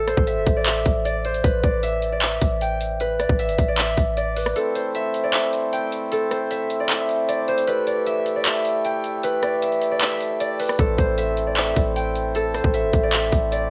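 A fingerpicked concert harp rings up front through this melancholic, eerie trap excerpt at 154 BPM in a half-time feel in A minor, its melody softened by a low-pass filter, cassette tape character and analog delay. Overdriven trap drums with a hard-clipped kick, metallic hats, handclaps and rim clicks sit forward alongside a deep, boomy, sine-toned 808-style bass. At 4.5 seconds the bass drops out, and at 4.6 seconds the kick falls silent as a reedy, breathing pedal harmonium enters with sustained chords. Both return at 10.8 seconds, all within a small, lightly reverberant room on a home cassette recording.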